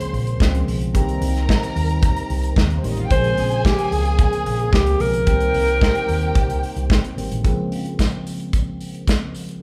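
This short cut from a longer piece has a light reverb and the feel of a band playing live in one room: a glamorous, sultry disco groove at 111 BPM in a straight 4/4, set in Bb dorian. Up front, a polished acoustic drum kit with a tight kick, medium-tuned snare and airy hi-hat drives the beat, while a dark, round hollow-body electric bass holds down the low end. A clean tine electric piano with phaser supplies the accompaniment over Bbm9 and Cm7 chords. A lush, distant string section with expressive vibrato carries a second line, and a mellow French horn section holds sustained chords in the background. At 3.1 seconds a breathy alto saxophone takes the melody, close-miked and intimate, with a whispered jazz subtone, scooped notes and a soft attack. Once the strings, horns, bass and sax have dropped away, a jingly tambourine joins the drums and electric piano from 7.4 seconds as the harmony settles on Bbm7.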